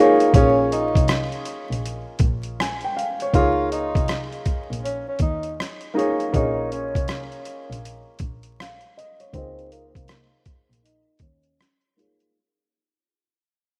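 A rough home-demo mix with vinyl crackle sits in a lush hall reverb, with a fade-out and a filter sweep running through this short cut from a longer lo-fi hip hop piece, leaving a hazy, nostalgic mood over a swung 4/4 groove. An up-front upright piano opens at 0.0 seconds with a woody, smooth, vintage tone, colored by cassette tape and a low-pass filter as it accompanies from a Bbm7 chord to Db69 at 3.3 seconds. A boom bap sampler-style kit, compressed, pitched down and gritty, drives the beat with a thumpy kick, hi-hat and rim click placed up front. From 0.3 seconds a breathy tenor saxophone carries the solo melody in a mellow jazz style, using subtone, soft attacks, scooped notes and light vibrato, softened by a low-pass filter and trailed by analog delay. Underneath, a distant bowed double bass adds a warm, vibrato-laden low end from a single player.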